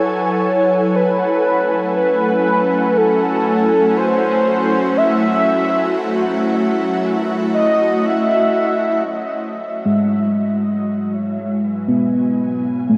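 A slow, straight pulse in 4/4 moves gently through this spacious, reflective ambient piece, cut from a longer work. A velvety synth lead carries the melody from the start, its smooth tone given a soft shimmer by chorus, vibrato and a diffuse ambient delay, while an ethereal, airy pad holds sustained chords beneath it through ensemble chorus and its own reverb. From 1.6 s to 9.2 s a string-like, tense drone with vibrato sits low and quiet in the mix. At 9.9 s muted, felt-like synth keys enter with intimate, dark arpeggios that decay under chorus and delay. The harmony moves from F#m7 to A5 and later to F#7(no3), and a huge, wet reverb with a very long tail bathes the whole recording.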